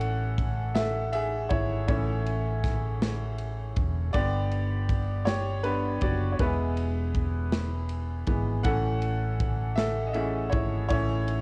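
A bright, woody upright piano takes the lead with a brilliant, open tone and long sustain, sitting up front through a cassette-tape color in this heartfelt, romantic pop ballad in 6/8 at 53 BPM, cut from a longer piece. Beneath it, a round, dark hollow-body electric bass holds the low end while an acoustic drum kit with a tight kick, medium-tuned snare and ride cymbal keeps a straight feel in a small room. The home cassette recording is dry and intimate, moving through A, G and E before returning to A at 8.7 seconds.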